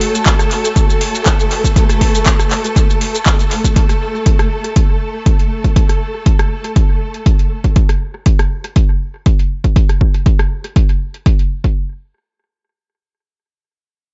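Dry and echo-heavy, this raw, trippy acid house excerpt sits in a dark, muffled band where nothing rises above 7.8 kHz. At 120 BPM in a straight 4/4, it rests on a single F# minor chord. A booming analog drum machine opens the excerpt, its metallic hats, handclaps, rim click and shaker low-pass filtered and trailed by tape echo, and an overdriven, punchy electronic kick soon drives it from up front. A clear, lush studio string section holds bowed, vibrato-rich chords from a distance, pumping against the kick until 7.8 seconds. At the opening, an airy, breathy pad blends detuned sawtooth and triangle tones with a noise layer and chorus, pumping softly in the background as it fades out by 3.8 seconds. At 11.8 seconds the harmony drops away into a brief closing section.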